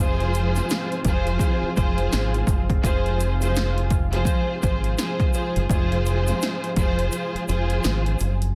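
Tough and gritty, this boom-bap hip-hop excerpt rides a swung 84 BPM groove in 4/4, sitting on a single F minor chord throughout. A bowed studio string section leads the accompaniment up front, lush and expressive with vibrato and a smooth top, dressed in plate reverb. Beneath it, a thick, warbling vintage sawtooth pad holds sustained chords in the background, its detuned unison voices softened by chorus and a slow attack. A deep, round fingered electric bass anchors the low end, dark and up front. The drums enter at 0.2 seconds, an electronic, layered kit with a punchy kick and snare and bright hats, overdriven and re-recorded in a large room, joined by a grainy, close tube shaker in the background, until the kick drops out at 7.1 seconds for the final stretch of a dense, heavily limited mix.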